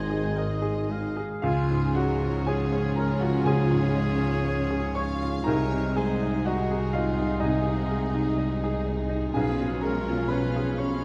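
A slow, rubato 4/4 pulse of 56-63 BPM carries this lush, passionate romantic excerpt for piano and orchestra in Db major, where a clear, up-front grand piano leads the melody over a very quiet, rich violin section, while a distant second violin section, a dark clarinet, an airy silver flute and a close-miked oboe add secondary lines, a smooth viola section fills the background, a very quiet French horn section holds sustained chords, trombones stop at 1.1 s and a roomy tuba at 1.2 s, and distant cellos and double basses anchor the bass in a moderate scoring-stage reverb.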